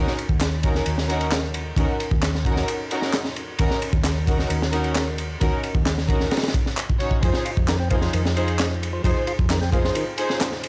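Bowed string stabs open this funky, gritty breakbeat cut at 132 BPM in Eb dorian, played sul tasto with vibrato and tape echo and sitting close and up front. A round, hollow-body fingered electric bass enters alongside them, and a crunchy, punchy break kit with a high-tuned snare, dark ride and saturated kick joins almost at once, with layered electronic handclaps tucked in the background. At 7.2 seconds the harmony moves from Ebm7 to Fm7 as a fat, lightly overdriven tonewheel organ riff enters behind the groove, percussive with key click, a stopped rotary speaker and tape echo, all in a dry hardware sound with light reverb and a dull top end.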